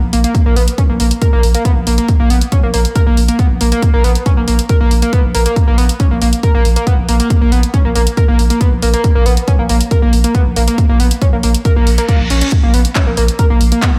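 Set in light reverb and digital ambience, this hypnotic, intense stretch of driving peak-time techno runs at 138 BPM in Bb phrygian, built on a heavy, layered electronic kick recorded in a large room, tape-warm analog drum-machine handclaps and hi-hats with sidechain pumping, and a deep, thick, saturated sub bass that pumps under an overdrive and low-pass filter. Up front, a gritty, screaming, guitar-like synth lead riffs between Bb3 and Bb4, its detuned sawtooth and pulse tones bright with distortion, chorus, vibrato and tape echo. A reverse cymbal sounds at 11.8 seconds as the section nears its cut.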